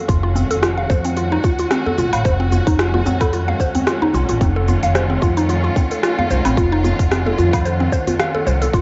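Warm and earthy, this short organic downtempo excerpt sets a lush, vibrato-rich bowed string section pumping against a woody, growly pizzicato upright bass, while a round, mellow mallet-like synth pluck spins arpeggios through chorus, phaser and tape echo over an overdriven tight electronic kick, crisp hats, rim click, shaker and woodblock, a very quiet soft-handed djembe, and an airy, breathy wind-like texture in the background, all colored by a home cassette recording with light digital ambience.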